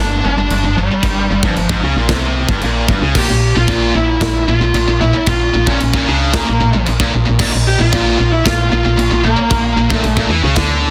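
Heavy metal at 113 BPM in a straight 4/4, this heavy, aggressive cut opens on a G5 chord, with a dark, picked high-gain lead guitar up front carrying the melody between G3 and G4 over two bright, distorted rhythm guitars riffing in the background and a woody, round FM bass. A tight acoustic kit joins at 0.5 s with china and crash cymbals, snare and kick in a big room, and at 3.2 s the harmony moves to Bb5 as a very quiet, double-tracked heavy guitar adds another riff. Light reverb sits over a dense, heavily limited modern master.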